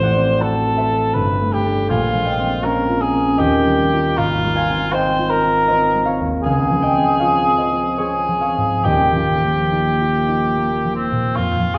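Wistful and hazy, this short impressionist fragment from a longer classical piece pairs a cor anglais with concert harp in a rubato triple metre. The cor anglais carries the mellow melody with a light vibrato, while the thumb-plucked harp lays down ringing accompaniment across a broad register, drifting through lush added-ninth and seventh chords. A wet recital-hall reverb places the listener further back in the room, softening the duo into a distant, roomy glow.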